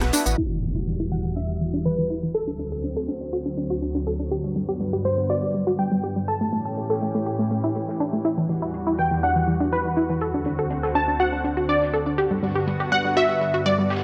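A punchy, bright unison pluck carries the melody from 1.1 s, giving this bittersweet, dreamy progressive house passage at 122 BPM in E minor a lo-fi cassette tint and tape echo. Beneath it, a round, detuned analog pluck plays chorused arpeggios and a thick, lush pad holds sustained chords. Both are shaped by filter sweeps from 0.4 s, where an electronic impact also lands, while an acoustic studio kit of hi-hat and snare sits in the background. The excerpt cycles through Emadd9, D7, Gmaj7 and A7 inside a moderate hall reverb.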